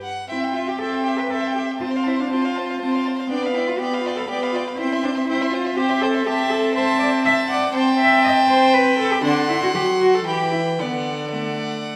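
Spirited and cheerful, this quick classical-period movement for string quartet moves in 3/4 at 120 BPM in C major, with a rubato feel and tuning at A4 = 444 Hz, heard as a short cut from a longer piece. The first violin carries the melody high in its range from 0.3 seconds, its bowed gut-string tone rich and reedy, while the second violin plays a supporting line just below in the same close, period-style voice. The viola fills in the accompaniment with a warm, smooth-topped sound placed up front, and the cello supplies the bass with light vibrato and a nasal edge, sitting up front yet sounding somewhat distant. The harmony starts on C, passes through F/C, G7/B and Am7/C, then turns toward D7, Em and D near the end. A wet recital hall reverb with a 1.5-second decay surrounds the quartet, set in a studio ambience.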